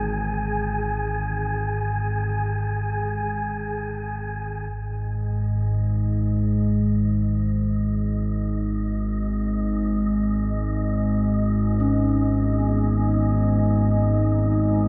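Ominous and cavernous, this dark ambient drone, cut from a longer piece, rests on an up-front, warbling analog sawtooth drone with chorus, while a soft, bronze metallophone played with padded mallets spins delayed arpeggios in the background, a breathy, wind-like tuned noise texture present from the start fades up from 4.7 s, and a deep, detuned pad of sustained chords joins at 8.7 s, the whole set inside a wet cathedral reverb with a dark, rolled-off top end.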